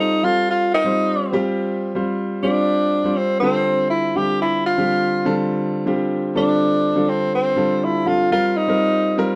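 A mellow tenor saxophone carries the melody of this slick, nocturnal jazz piece, its soft attack and vibrato sitting up front with a roomy, slapback-echoed tone. A smooth, vintage grand piano accompanies it at a straight 122 BPM in 4/4 and C dorian, moving from Cmadd9 to Dm7 at 3.4 seconds and settling on Cm11 at 8.3 seconds. The dry, close 1970s-style studio sound carries light reverb, and the passage is cut from a longer piece tuned to A4 = 443 Hz.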